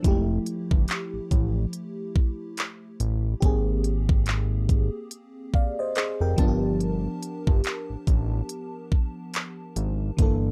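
Tender and dreamy, this short contemporary R&B excerpt moves at 71 BPM with a 16th-note swing, its chords shifting from Fmaj9 to Abmaj9 and then G7 in a dark, dry production. A lush FM electric piano with a soft pad layer, mellow and treated with chorus and phaser, carries the harmony and adds a fill at 5.5 seconds. A fat, detuned analog bass with a filter sweep and an electronic pop drum kit, with its knocking kick, crisp hats and handclaps, sit up front beneath it.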